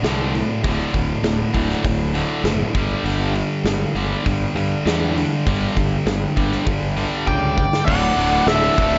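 A light studio reverb and a rounded, dark-edged top end frame this short cut from a longer classic rock piece, sunny and confident in mood with a straight feel. Two bright, picked distorted guitars play a low riff over D5 and G5 chords, joined by a round, fuzz-laden fingered bass and a big acoustic drum kit with crisp cymbals, a medium-tuned snare and a punchy kick in a natural-sounding room. At 7.3 seconds the drums play a fill as a bluesy overdriven lead guitar enters with slapback echo, sitting above the band, while a quieter octave-fuzz lead guitar adds a second line beneath it. At 7.9 seconds the harmony shifts to D and a gritty tonewheel organ slips in very low in the mix, holding thick sustained chords through a rotary speaker with audible key click.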